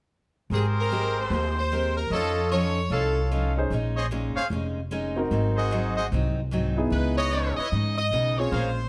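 An edgy saxophone section carries the melody with light vibrato, dropping out at 3.3 seconds and returning at 6.9 seconds, in this energetic, joyful big band swing passage cut from a longer piece. Bright trumpet stabs, a full-bodied picked steel-string acoustic guitar with finger squeak, and a woody, dark pizzicato upright bass accompany it, with the bass up front. A clear, intimate grand piano with audible action noise joins at 3.6 seconds, all captured through close, detailed microphones with light reverb.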